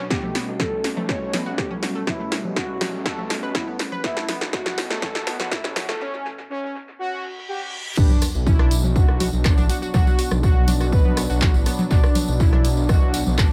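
Melodic techno with a driving, cinematic mood, cut from a longer piece, where a heavy, layered kick sits up front beneath a punchy analog drum machine of snare, handclaps, hi-hat, rim click, congas and crash, while a menacing detuned saw bass, a smooth pad and a round warbling pluck arpeggio all pulse under sidechain pumping above a very quiet string-like drone. A fat, brassy analog synth lead carries the melody with chorus and dub echo as filters sweep through the build-up over an A7 chord, breaking at 6.0 seconds before a reverse cymbal and sub drop lead into the drop on B minor at 8.0 seconds. There a jingly acoustic tambourine joins the echo-heavy, lightly reverberant mix.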